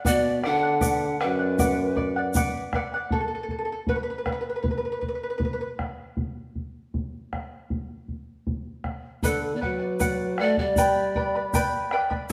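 Earthy and wistful, this Andean folk fragment, cut from a longer piece, moves at an unhurried 78 BPM in a straight 2/4 feel in B minor, opening on a B minor chord. A breathy pan flute carries the melody with a woody chiff, vibrato and a slightly unsteady, rounded tone, while a distant, roomy French horn shapes a low second line in a classical manner. Up front, a fingerpicked acoustic charango shimmers across its doubled strings, some voiced in octaves, and takes a solo in the middle passage starting at 3.1 seconds, while a round, vintage-sounding bombo plays the whole way through. A grainy, close egg shaker adds a bright edge, and at 9.2 seconds the flute, charango and shaker return together over B minor, joined by the horn a moment later at 9.3 seconds, moving to G at 10.8 seconds. The ensemble sounds like a band playing live in one room, wrapped in a wet stone-room reverb.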